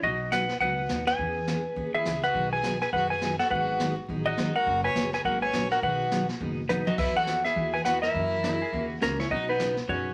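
Playful and down-home, this brief excerpt of swung country western swing at 207 BPM features an up-front, dark, compressed lap steel guitar carrying the melody over bright, full-bodied picked acoustic guitar, woody pizzicato upright bass and a vintage brush drum kit with a drum fill at 6.7 seconds, while a clear, smooth fiddle joins at 2.0 seconds and a pedal steel guitar adds volume swells at 8.4 seconds, all wrapped in studio reverb and vinyl crackle.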